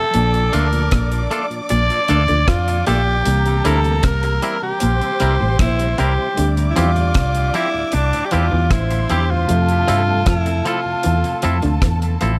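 Smooth and romantic, this lovers rock reggae excerpt moves at 77 BPM in a straight 4/4 over Bbmaj7, C7 and Dm11 chords, with a raspy, gritty tenor saxophone carrying the melody up front through tape echo and a lush, bowed violin section adding a second line. Beneath them, a punchy, foam-muted fingered bass and a dry reggae drum kit with tight kick, hi-hat and rim click anchor the groove, while a twangy, clean guitar plays stabs through dub echo and a slightly broken-up, lo-fi guitar riffs through analog chorus. A worn, slightly out-of-tune tine electric piano with subtle chorus and dub echo and a very quiet tonewheel organ with key click and slow rotary speaker fill the background, all set in a small room with light reverb.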